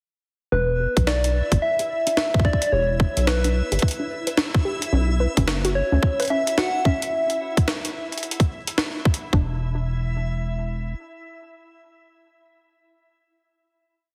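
This is a short, eerie and glitchy IDM piece at 109 BPM in 4/4, with a 62% swing on the 16ths. At 0.5 s it opens on an Em7 chord with three parts together: a round, gentle FM lead with a sub octave that plays call-like motifs, a lo-fi, detuned pluck whose 7-step arpeggio loop drifts against the bar under a filter sweep, and a rubbery, saturated acid bass that carries a dark dub-style line up front. From 1.0 s a tight electronic kick plays a broken pattern alongside a gritty, pitched-up jungle-style sampler kit, whose closed hats and medium-tuned snare form a glitched, ever-changing beat touched with digital delay. Behind them sits a faint reversed, granular texture that swells up to a held high note, soft and dreamy in its own reverb. The harmony moves to Bsus2 and then drops away from the chord, and at 9.3 s the groove gives way to a final chord as the bass returns. A lush hall reverb surrounds the mix, while heavy multiband compression gives it a dense, radio-like sheen.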